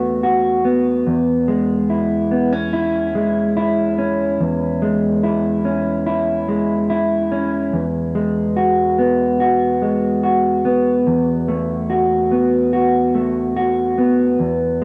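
A straight 4/4 pulse at 72 BPM carries this blissful, ethereal dream pop fragment, cut from a longer piece. A single mellow electric guitar plays alone from 0.0 to 14.8 s, fingered and clean with a dark tone, sitting up front in the mix and ranging from E2 to F#4. Lush chorus and tape echo soften its edges, and a moderate recital hall reverb gives the guitar a gentle sense of space. The harmony rests over an E bass, moving from B5/E to C#m7/E at 1.1 s, then to G#m7/E at 7.7 s, before returning to B5/E at 11.1 s. Beneath the dreamy haze, the recording has a gritty hardware character.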